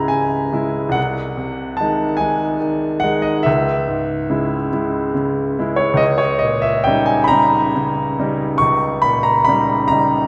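Classical romantic nocturne for solo piano, cut from a longer piece and lasting just over ten seconds, with a wistful, melancholic mood. A clear grand piano carries the whole passage alone, playing in a compound metre with free, rubato phrasing. Its range stretches from deep in the bass up into the high treble, and the instrument sits up front with an intimate, natural character, close enough that the action noise of the keys and hammers is audible. The harmony moves from a minor tonic to a dominant-seventh chord, returning to the minor chord at 3.5 seconds before shifting to another seventh chord at 6.0 seconds. A wet concert hall reverb with a long tail surrounds the piano, so the closeness of the instrument contrasts with the spacious ring of the room.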